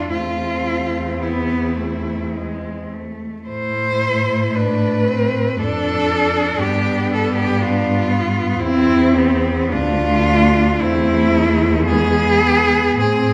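Solemn and melancholic, this classical cello ensemble piece moves at a slow 50-62 BPM in 3/4 with a rubato feel, set in A minor and tuned to A4 = 441 Hz. Four bowed cellos play throughout the 13.3 seconds of this excerpt, cut from a longer piece. The up-front lead cello carries the melody with rich vibrato, soft attacks and expressive portamento. Beneath it, a second line sings with a smooth, even tone. An accompaniment cello mirrors the lead's soft-attacked, sliding expressiveness. A bass cello sits far off yet up front, its sound warm and vibrato-laden. The harmony passes from Am/E through E, Am, Dm/F, G, C/E and Dm before returning to Am/E and closing on E at 11.9 seconds, all held in the generous reverb of a recital hall or church.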